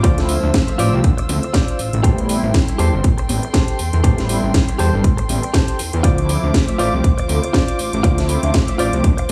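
A fat, detuned sawtooth analog bass with tube saturation drives this sensual, groovy filtered disco house excerpt at 120 BPM with a light 16th-note swing, pumping under a punchy, up-front electronic kick, cracking snare and metallic hi-hats, while mellow, round synth brass with chorus and phaser, a dark, intimate bowed chamber string section and a bright, twangy clean electric guitar riff with 12-bit sampler grit all sit behind a low-pass filter over Dm7 and Am7 chords in a small, lightly reverberant room.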